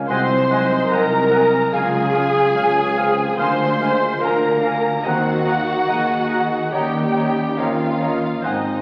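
A rubato 4/4 pulse at 72 BPM carries this warm, serene classical passage, a short cut from a longer piece, with chords moving from Ab7/C through Db and Bb7/D to Ebm and Eb7. The violin section takes the melody with a soft-attacked, expressive vibrato that sits distant in the background, while a second, more focused violin section adds a line of its own, and a lush, even viola section forms the most prominent accompaniment. Flute, mellow cor anglais and very quiet bright clarinet weave further lines, a soft-attacked bassoon adds accompaniment, and a concert harp rings out thumb-plucked arpeggios from Ab2 to Bb5. Underneath, a close-miked, punchy tuba anchors the bass alongside very quiet cello and double bass sections, the cellos sliding with portamento. A dark, roomy French horn section holds sustained chords and a tight trumpet section adds punchy stabs, both very quiet and set far back, all bathed in a scoring-stage reverb of 1.6 seconds and coloured by the crackle of a very old 78 rpm record.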